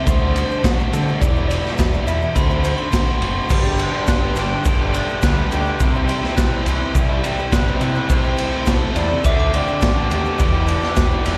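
A straight 4/4 indie rock groove at 105 BPM in G major is driven by a raw, up-front garage drum kit with a punchy kick and dark cymbals, a growling, overdriven picked bass and a grainy tube shaker in the background, all carrying a carefree, jangly mood through this short cut from a longer piece. An overdriven electric guitar riff runs throughout beneath a very quiet, flute-like tonewheel organ holding sustained chords, while a dark, clean, fingered guitar melody with slapback echo appears from 0.0 to 3.2 seconds and returns at 8.1 seconds, touched by bell-like glockenspiel lines. At 3.5 seconds a bright garage guitar enters with a second riff coloured by chorus and slapback echo, over chords moving from Gadd9 through Cmaj7 and Am/C, and the whole is heard through a venue PA with small-room and recital-hall reverb.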